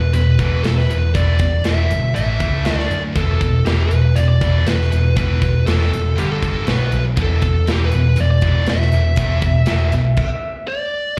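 Heard through a club PA with a touch of room reverb and a faint mains hum, this heavy, menacing hard rock fragment in E minor drives at 120 BPM in a straight 4/4, moving through power-chord shifts like E5, A5, D5, G5 and B5. A growly, punchy overdriven picked bass sits up front beneath a double-tracked, high-gain distorted guitar riff, while a tight metal drum kit with a gritty, saturated snare-and-kick sound and bright cymbals pounds out the beat. A biting overdriven lead guitar carries the melody with slapback echo and continues through the stop that begins at 10.2 seconds, until 11.2 seconds.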